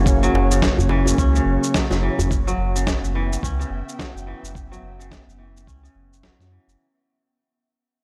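Hypnotic and warm, this fading excerpt of organic downtempo at 107 BPM, tuned to A4 = 436 Hz, moves from F# to G6/F# over swung sixteenths as a bright tine electric piano with tape echo and a djembe played with soft hands drop out at 2.3 seconds, leaving a crisp, fingerpicked kora arpeggiating through a low-pass filter, an ethereal, detuned pad breathing in the background, a round, nasal analog bass pumping up front, and a gritty, thumpy sampled kick with shaker and snare, all captured dry on cassette tape.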